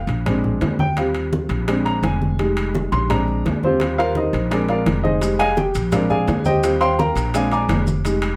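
A woody upright piano sits up front and takes the solo throughout this lively, danceable Afro-Cuban jazz excerpt at 170 BPM in a straight 4/4, cycling through Bb7, Eb69 and Fm7 harmonies. Beneath it, a warm pizzicato upright bass with steel strings holds the low end, while bright, low-tuned congas played with soft hands, round and very quiet bongos, and ringing, distant metal-shell timbales drive the groove. Grainy, mellow maracas slip into the background at 5.2 seconds, and a moderate studio reverb gives the whole a natural sense of space.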